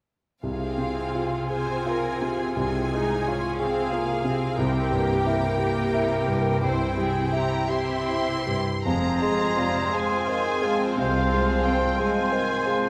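A polished grand piano sits up front and carries the melody in this tragic, brooding romantic movement for piano and orchestra, a passage cut from a longer work in F minor, in a rubato 12/8 that moves at roughly 48-61 BPM in dotted quarters. From 0.4 seconds a lush violin section shapes a smooth second line while a distant viola section supplies accompaniment, and from 0.5 seconds focused cellos hold the bass, the harmony moving from Fm/C to C7. At 7.3 seconds a dark violin section enters high above with an expressive melody, colored by vibrato and portamento. When the music settles back on Fm at 8.9 seconds, further parts join: a clear solo oboe and an airy flute ensemble in the background add second lines, a bassoon with light vibrato fills in the accompaniment, a very quiet, mellow horn section sustains chords, and a double bass section deepens the bass. A wet scoring-stage reverb lends the orchestra a spacious, cinematic sheen.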